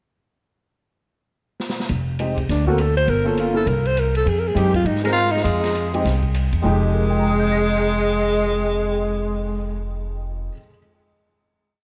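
A breathy, whispered alto saxophone carries a returning bebop-style theme through this smoky, late-night small-group swing piece in F minor at 202 BPM, joined at 5.1 seconds by a raspy, growling tenor saxophone answering in the melody's rests, both horns touched with delay, over a woody, thumpy two-feel upright bass, syncopated rootless comping from a concert grand piano with ensemble chorus and audible action noise, and an open drum kit of dark cymbals, high-tuned snare and boomy kick that opens with a fill at 1.6 seconds and stops at 6.6 seconds, the whole set in a dreamy, reverb-soaked mix.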